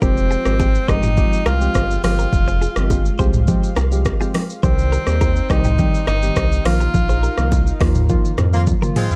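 A dark, dry production with a mellow, hypnotic feel frames this short afrobeats passage in F minor at 104 BPM, where a breathy, whispered tenor saxophone carries the melody through tape echo over soft, chorused electric-piano-like synth keys, a very quiet detuned analog pad, and a bright, twangy clean guitar riff with phaser sitting in the background. A round, deep analog bass and an up-front electronic afro-pop kit with an overdriven deep kick and metallic hats drive the groove, joined by close acoustic congas and bongos, while the chords move from Fmadd9 to Cm and Bbsus4. A band accent lands at 6.9 seconds, the sax drops out at 7.8 seconds, and a smooth horn section enters at 8.5 seconds as a drum fill closes the passage.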